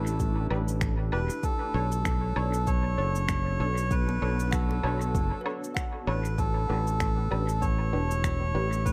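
An echo-heavy digital ambience surrounds this spacious, peaceful ambient dub excerpt, where a reedy, breathy melodica carries the melody through dub echo over a blurred granular cloud pad, muted sawtooth chord stabs coloured by chorus, cassette tape and dub echo, a growly, up-front fingered electric bass, an overdriven deep electronic kick, tape-warm electronic shaker, woodblock and finger snaps sent into dub echo, and, from 4.1 s, a woody kalimba playing arpeggios through analog delay in the background.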